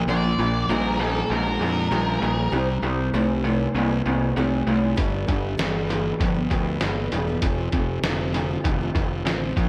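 Classic rock at 98 BPM in 4/4 with a confident, driving feel, this short excerpt moves through Bb, C, G and F as a raw, lo-fi garage guitar with slapback echo sits up front alongside a round, fuzzed fingered bass, while a crunchy overdriven guitar also plays a riff from the background and a bright, jumbo steel-string acoustic with audible finger squeak is picked underneath. A dark octave-fuzz lead guitar adds a brief second line from 0.1 to 2.5 seconds, and at 5.0 seconds a muffled, pitched-down sampler-style drum kit with a thumpy kick and tape-warm compression enters up front. A lush hall reverb gives the whole a big arena sound.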